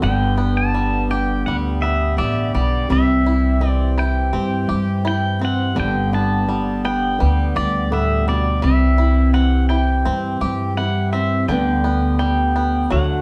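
Acoustic folk for a small band, warm and gentle in mood, moving at an unhurried 84 BPM in G major, cut from a longer piece. A bright, clean pedal steel guitar carries the melody with slide and volume swells, taking a solo over the first 2.9 seconds, while a woody, old-stringed jumbo acoustic guitar fingerpicks the accompaniment, a twangy, percussive banjo adds arpeggios, and a dark, plucked upright bass sits up front. A mellow, reedy accordion holds sustained chords in the background, and the whole group sounds set back in a studio room with lush reverb as the chords alternate between G and C.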